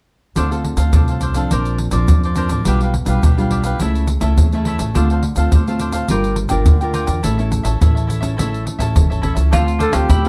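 At 0.4 seconds a lively, yearning samba and choro groove in D minor starts at 105 BPM: crisp picked cavaquinho, fingerpicked classical nylon-string guitar with audible finger squeak, and a woody pizzicato upright bass play alongside up-front, close and dry percussion of tube shaker, tight surdo, pandeiro and tamborim. The chords move from Dm7 through Bbadd9, G7/B, A/C#, Gm7 and A before settling back on Dm7 at 9.5 seconds, where a mellow double-strung mandolin adds a brief second line. At 9.8 seconds a warm flugelhorn steps up front for a jazz-style solo with light vibrato and scooped notes, all in a dark production with light reverb as this cut from a longer piece ends.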